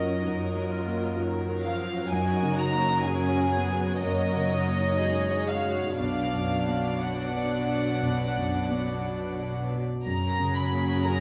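A slow, rubato cinematic cue in F# major begins with piano and strings together. An up-front violin section carries a pure, floating melody over a second violin line, while a dark, mellow baby grand with audible action noise, a lush, woody viola section with vibrato and a distant cello section on the bass fill out the texture. The mood is uplifting and moving at 58-66 BPM, with harmony moving from D#madd9/F# through F#add9 to Bm and back, the violins and cellos bowed sul tasto with soft attacks, all set in the wet reverb of a recital hall in this brief passage cut from a longer piece.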